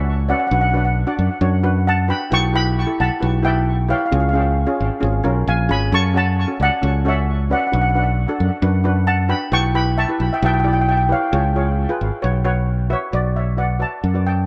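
An echo-heavy mix steeped in moderate spring reverb frames this tense, driving calypso in B minor at 133 BPM, a short cut from a longer piece. Up front, a dark, smooth lead steel pan played with medium rubber sticks carries the melody through tape echo. A metallic, shimmering double seconds pan struck with hard rubber sticks supplies mid-forward accompaniment over a warm, direct fingered electric bass that also sits prominently in the mix, while the harmony moves from Bm through Em/B, C# and F#m, then again through Bm and Em/B to C#7 and Bsus2, before returning to Bm at 13.1 seconds.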